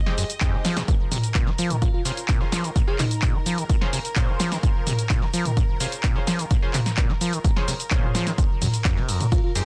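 This acid house excerpt runs at 128 BPM in a straight 4/4, driven by a dry, punchy electronic kick sitting up front and an analog drum machine kit of handclaps, hi-hat, ride cymbal, shaker, snare and toms, both carrying a touch of small room ambience. Underneath, a liquid acid bass riff squelches between F2 and F3, its resonant sawtooth tone sweeping through a filter with saturated, 12-bit sampler grit, chorus, tape echo and sidechain pumping. A band-passed chord stab adds nasal, detuned sawtooth hits coloured by chorus, phaser, cassette tape wear and tape echo, while a rich bowed string section holds sustained chords in the background with sidechain pumping. A sparkling, bell-like FM electric piano melody appears from 1.8 to 3.5 seconds and briefly again near 9.3 seconds. The harmony moves from Fm7 to Bbm7, landing on F5 at 8.4 seconds, and the dense, heavily limited mix with little reverb makes the whole groove feel gritty and trippy.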